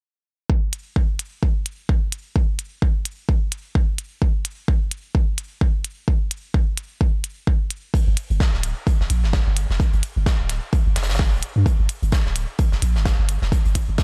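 A deep, up-front electronic kick drum anchors this sparse, quirky minimal techno excerpt from 0.5 seconds, joined at 0.7 seconds by clicky, swung electronic hi-hats, both re-recorded in a small room, before a huge arena drum kit with pumping, filtered hats and a medium-tuned snare enters at 7.9 seconds through gated reverb and a pumping hall room, joined at 8.1 seconds by a punchy sine sub bass with a pitch-drop attack and sidechain pumping, within a dry, bright 1980s-style digital production.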